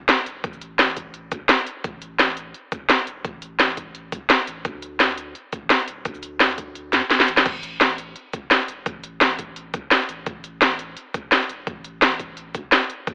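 A straight 4/4 drum and bass groove runs at 171 BPM, driven by an electronic, layered kit with a cracking snare, crisp hats, shaker and crash cymbal that sits up front after being re-recorded in a small room. A sampler-style electronic kick joins at 0.4 seconds, compressed, gritty and thumpy with a tape-warmed edge. Beneath it all, a deep, round sine sub bass with a fast attack holds sustained notes between D1 and F#2, sitting low in the mix. This liquid drum and bass passage feels lush and dreamy, heard through a telephone-like filtered sound with light reverb, and it is cut from a longer piece. The same drop plays twice, and the kick drops out at 6.8 seconds while a drum fill carries the music into the repeat at 7.5 seconds.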